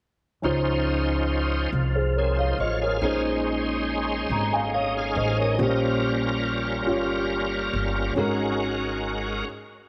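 Uplifting and soulful, this slow gospel passage in 6/8 moves at 47 BPM in dotted quarters through rich Db major harmony, from Dbmaj9 to Bbm11, Gm7b5 and a suspended Ab9sus4. A dark, mellow upright piano carries the accompaniment, while a bright, shouting tonewheel organ sits up front with sustained chords, its slow rotary speaker, light overdrive, chorus vibrato and key click giving it a full presence. A woody, thumpy pizzicato upright bass on gut strings anchors the low end, all set in a moderate echo chamber reverb, before the parts stop together at about 9.4 seconds and the reverb carries on briefly in this fragment of a longer piece.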